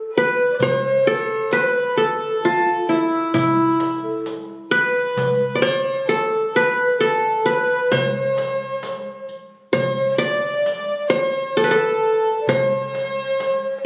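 A bright-edged, plectrum-plucked qanun leads this passionate Arabic maqam ensemble piece in A maqam suznak, carrying the melody up front at 131 BPM in a straight 10/8, while a breathy, hollow end-blown ney with vibrato sits in the background and a dark, gut-string chamber violin section adds a further second line. At 0.6 seconds a crisp metal-shell darbuka and a riq with bright jingles and hard hands join quietly beneath. The sound, captured on a phone in a moderate recital hall and given added club reverb and compression, has a roomy, compressed sheen, and the clip is cut from a longer piece.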